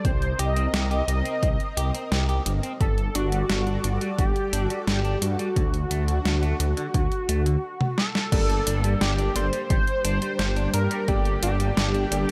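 This driving, cinematic synthwave excerpt opens with everything but two parts already sounding: a thick, bold unison lead carries the melody with vibrato, analog chorus, tape grit and digital delay, over a silky, string-like analog pad that sits in the background with ensemble chorus and sidechain pumping. Underneath, a dark detuned saw bass rumbles up front, pumping with the sidechain, while a punchy, tape-warm electronic kick and an overdriven, sampler-style 8-bit drum machine with crash, hi-hat, snare and toms drive the straight 4/4 pulse. A clean, hollow-body electric guitar plays a fingered riff in the background, dressed in lush chorus and delay. After a brief break with a drum fill at 7.8 seconds, the second section arrives at 8.3 seconds, where a vintage electric grand piano with a clangy low end adds stabs. A soft, pure FM bell joins at 9.0 seconds as a gentle, decaying second line with chorus and delay, and the kick drops out at 11.2 seconds, all set in light reverb.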